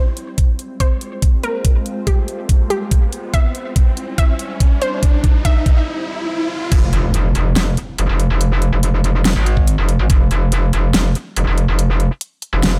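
Menacing and chaotic, this heavy wobble dubstep cut runs at 142 BPM in a half-time feel, opening with a build-up where a detuned, ring-modulated unison pluck carries the melody through digital delay over an evolving wavetable pad with phaser and sidechain pumping, while a riser climbs from 1.5 seconds and an overdriven dubstep kit with a huge snare plays a fill before a brief break. At 6.7 seconds the drop hits with an electronic impact, and a metallic, saturated FM wobble bass with chorus surges up front, joined briefly around 9.6 seconds by the knocking, tape-warm electronic kick. The mix stays dry.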